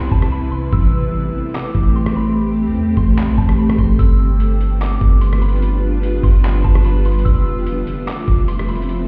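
Atmospheric cloud-rap at 147 BPM in a half-time 4/4 feel, this short cut from a longer piece floats in a blissful haze, its chords moving from Cmaj7 through Am7 to G7 and Fmaj7. A granular cloud pad holds sustained, blurred, detuned chords up front, its slow attack and long release softened by built-in reverb and pumping with sidechain. Beneath it, a deep, round 808-style bass with a sine tone sits up front, while a soft, pure FM synth bell carries the high melody through chorus, phaser and delay until it stops at 8.9 seconds. A reversed, swelling triangle texture glows faintly in the background with its own reverb. The lo-fi sampler-style drum kit, compressed and pitched down with a thumpy kick, handclaps, hi-hat and rim click, enters at 0.1 seconds, though the first 4.0 seconds form a break. The whole mix sounds muffled, as if heard through a wall, within a stone-room reverb.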